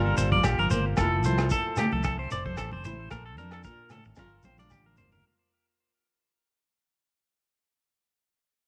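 Vinyl crackle and a light studio reverb frame this warm, carefree highlife guitar band fragment, which runs at 112 BPM in 4/4 with swung sixteenths and moves through Gm7, Fmaj7 and Bbmaj7 chords while fading out. An up-front, bright, twangy clean electric guitar plays compressed picked arpeggios through harmonic tremolo and tape echo. A round fingered bass and a fingerpicked flamenco guitar with audible finger squeak play beneath it, while a gritty, saturated breakbeat kit with a punchy kick and high-tuned snare sits in the background beside damped, distant congas, a grainy shekere and ringing agogo bells. The kit plays a drum fill from 4.2 seconds, and after the band stops at 5.2 seconds the flamenco guitar carries on alone until 7.4 seconds.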